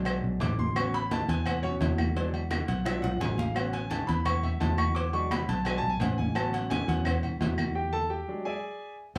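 Festive and joyful, this salsa excerpt features a clear, smooth grand piano soloing up front over a dark, foam-muted fingered electric bass, while low-tuned congas with a thick skin, round cowbell and bongos, ringing metal-shelled agogo bells and timbales, and woody claves sit back in a small, reverberant room, alternating between E7 and A6 chords, with a drum fill at 2.9 seconds and a stop at 7.8 seconds where the congas and claves drop out.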